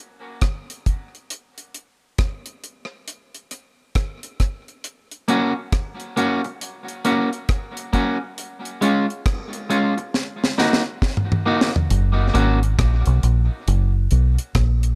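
A dry, up-front reggae kit opens this laid-back, hazy dub excerpt in F# major at 68 BPM with a swung feel, its tight kick, high-tuned snare, rim clicks, hi-hat and toms carrying a break from 0.4 seconds. A twangy, picked electric guitar at the edge of break-up enters at 5.3 seconds, its tremolo and tape echo moving over F#, C# and D# minor chords, before a drum fill leads into the next section. At 11.9 seconds a dark, round, foam-muted fingered bass arrives prominently on F#, all set in a small room ambience.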